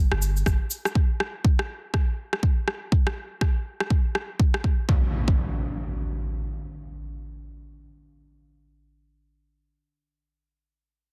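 A dense, heavily limited modern master with a small room ambience frames this hypnotic, driving afro house fragment, cut from a longer piece and set on a swung sixteenth-note feel. A deep, boomy 808-style bass with a sine tone and sidechain pumping sounds only in the first 0.6 seconds, joined briefly by a grainy, bright acoustic cabasa, while a punchy, overdriven electronic kick and a layered, overdriven electronic rim click sit up front. The rim click drops out at 4.6 seconds, and at 4.9 seconds the music moves into a new section, marked by an electronic impact that carries on as the kick falls away.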